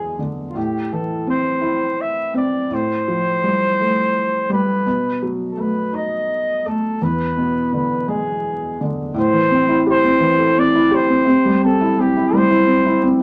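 A vinyl crackle and a club's wet reverb wrap this brief cut from a longer piece, an acoustic folk-pop ballad in A minor that moves in a slow, straight 6/8 at 56 BPM, counted in dotted quarters. The mood is melancholic and heartbroken. A warm flugelhorn carries the melody up front, its light vibrato and classical phrasing given a distant, roomy quality, while a felt-muted upright piano sits close and intimate beneath it, soft and mellow with the natural sound of its action audible. The harmony turns from E7 through Am, Fadd9/A and B7 before returning to E7. At 9.2 seconds the music moves into a new section on Am7 and C, where a mellow French horn enters in the background with a second line, distant and roomy with its own light vibrato, and the three parts close together around 13 seconds.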